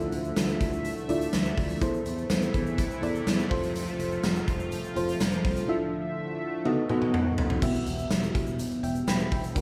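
Dramatic and urgent, this short 1980s-style pop excerpt moves at 124 BPM in a straight 4/4, set in D minor. A mellow FM electric piano carries the accompaniment up front, its soft, round, dark tone given a chorus sheen, while a sweeping resonant pad built from sawtooth and sine with a sub octave holds bright, evolving chords beneath it until 7.6 seconds. A fingered electric bass sits low with a round, punchy, direct sound, and a very quiet, grainy tube shaker adds texture in the background. The big rock drum kit enters at 0.1 seconds, up front with a punchy kick, medium-tuned snare, bright cymbals, hi-hat, tambourine and toms, all bathed in gated reverb. A drum fill runs from 6.7 to 7.6 seconds as the harmony moves from Dmadd9 through B7 to Emadd9, and light studio reverb gives the whole a polished room sound.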